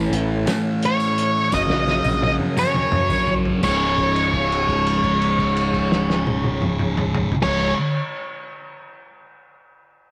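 A slow 6/8 pulse at 57 BPM drives this hypnotic, kaleidoscopic psychedelic rock excerpt, where a thick, double-tracked fuzz guitar riff with phaser and a growling overdriven fingered bass sit over a muffled, cloth-damped drum kit with a fat snare and dark cymbals, a mellow flute-like tonewheel organ holds sustained chords through a slow rotary speaker in the background, a jingly tambourine sounds from 0.5 to 4.0 seconds, and an octave-fuzz lead guitar with tape echo enters at 0.9 seconds, a drum fill runs from 1.5 to 3.6 seconds, and a held note then sustains from 3.6 until 7.4 seconds as the chords move from A to Gb to Db.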